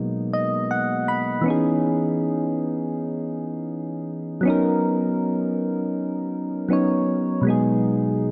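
A lush hall reverb with a 2.7-second tail surrounds this short clip, and its top end is rounded off, giving the sound a hazy, close softness. It is a longing, moody R&B passage at 80 BPM in 4/4, with a 16th-note swing that lends a relaxed sway. The only part is a solo electric-piano-like synth keys sound, mellow and round with a gentle, sine-like core, a fast attack and decaying notes. A detuned, chorused shimmer and a filter sweep colour the keys, which sit up front and span from B2 to B5. The keys open with a fill during the first 1.4 seconds over G#m7/B, then move through C#m9 and Bmaj9 before returning to G#m7/B, and the excerpt is cut from a longer piece at 8.3 seconds.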